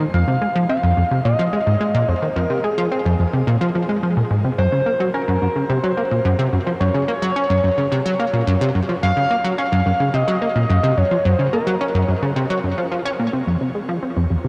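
Ambient, sequencer-driven space music with an expansive, hypnotic mood, in which an up-front, punchy analog bass riff with a funky filter pluck and lush chorus drives the piece while a shimmering, retro pulse-width lead sings a sustained melody with vibrato, both bathed in shimmer reverb and delay inside a huge, dark ambient space, before a barely audible, warbling analog drone slips in at 14.1 s just as this excerpt cuts off.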